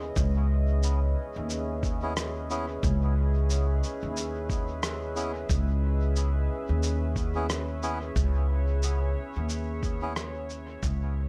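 An echo-heavy, hazy ambient dub excerpt at 90 BPM in C# minor, where a deep, moody sawtooth pad with chorus holds a C#m7 chord beneath an up-front, woody pizzicato upright bass, a muffled, thumpy electronic kick and dub-echoed cabasa and rim click swing gently on the 16ths, and a reedy, breathy melodica adds dub-echoed stabs from 2.0 seconds before the piece fades out from 9.1 seconds.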